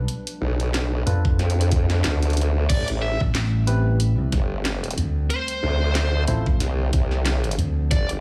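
A growly, punchy slap bass run through an envelope filter sits up front alongside a compressed, chorused formant-sweep wobble bass in this playful, funky glitch hop excerpt at 92 BPM, swung on the sixteenths and moving through Bm7b5, Am7 and Dm7. A drum kit of cracking snare, crash and bright hats plays from the start and is joined at 1.2 seconds by a knocking electronic kick, both re-recorded in a small room, while barky, lightly overdriven tine electric piano stabs pump with sidechain and tape echo. A bluesy, distorted lead guitar carrying 12-bit sampler grit takes the melody from 2.7 seconds over a dark, nostalgic, warbling lo-fi pad in the background.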